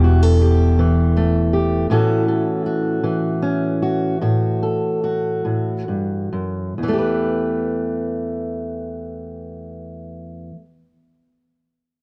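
A fingerpicked steel-string acoustic guitar carries this wistful, yearning folk excerpt in E dorian, its sound close and warm with audible finger squeak as it moves from Em to A6 and back to Em in a slow 6/8 of 43-54 BPM that slows down between 1.9 and 6.8 seconds. A dark, round hollow-body electric bass sits up front only for the opening 1.9 seconds, then the guitar plays alone until 10.7 seconds. Light reverb and small room ambience surround the parts, while worn cassette tape adds a warbly pitch drift.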